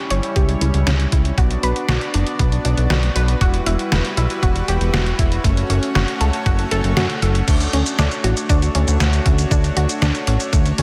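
Driving and moody, this synthwave excerpt moves at 118 BPM in a straight 4/4, with a smooth supersaw holding sustained chords that pump under sidechain, a lush unison pluck spinning arpeggios through digital delay, a fat, up-front analog bass with a filter sweep, a detuned 8-bit drum machine supplying crash, hi-hat, shaker and a medium-tuned snare, and a thumpy electronic kick from 0.4 seconds, all set in a lush hall reverb as the chords move from C#dim through Bm, Emadd9 and F#m before settling on Dmaj7 at 7.5 seconds.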